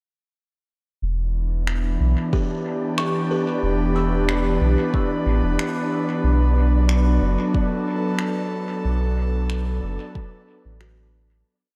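A soft, slow overdriven electronic kick and sparse finger snaps carrying dub echo set a straight 4/4 groove for this hazy, deep ambient dub piece, where a round sub bass line sits beneath breathy, chorused pad chords shifting from Em7 to Bm7, a buzzing, woody kalimba drifts in two unequal arpeggio loops from 2.3 s, a dark wind-like tuned noise holds a high note in the background, and the reverb-soaked mix fades out from 8.0 s.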